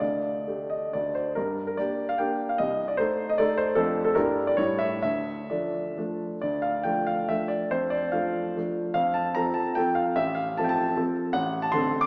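A polished grand piano sits up front as the only instrument, playing a romantic classical dance in triple time with dotted rhythms and a nostalgic, wistful mood. The playing is full of rubato, so the pulse stretches and gives as the phrases unfold, and the part covers a range from A1 to D6. The first section runs until about 6.4 seconds, where a second section takes over and carries the music to the end of the excerpt at 12.1 seconds. The instrument sounds present and warm, set in a wet concert hall reverb that lingers for about 2.1 seconds, though the overall sound has the quality of a small speaker. This is a short cut from a longer piece.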